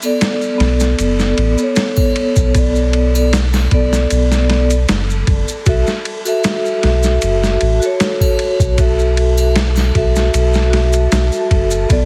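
A metallic, ringing vibraphone, treated with tremolo and tape echo, opens this dark, melancholic trip hop fragment alongside soft maracas and triangle and a breathy, wind-like noise texture in the background. A gritty, pitched-down boom bap sampler kit with a thumpy kick, high-tuned snare and ride cymbal enters at 0.2 seconds, and a round, deep analog bass follows at 0.6 seconds, both sitting up front as the harmony moves from Bm7 to F#m7. The whole mix has light reverb and a heavily compressed, radio-like sound.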